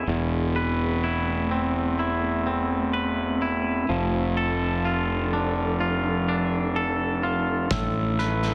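Brooding yet cathartic, this slow post-rock excerpt in A minor at 63 BPM sets a twangy, tape-echoed electric guitar's arpeggios up front over a round, fuzz-overdriven fingered bass and an ethereal, chorused pad holding sustained chords in the background, moving from Amadd9/E to Dm/F, before a dark, bell-like glockenspiel and a loose indie drum kit with punchy kick and snare enter at 7.7 s, all within a lush hall reverb.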